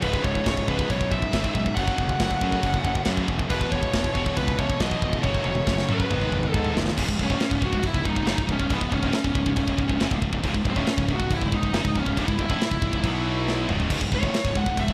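A dark, high-gain lead guitar rides up front over a saturated, gritty metal drum kit with a tight kick and rolled-off top, while three bright, picked distorted guitars churn riffs in the background (one a double-tracked fuzz part that drops out at 7.0 seconds and returns at 10.4 seconds) and a growly, overdriven fingered bass anchors this aggressive, relentless heavy metal excerpt in a lightly reverberant studio room, with drum fills marking the turns between sections.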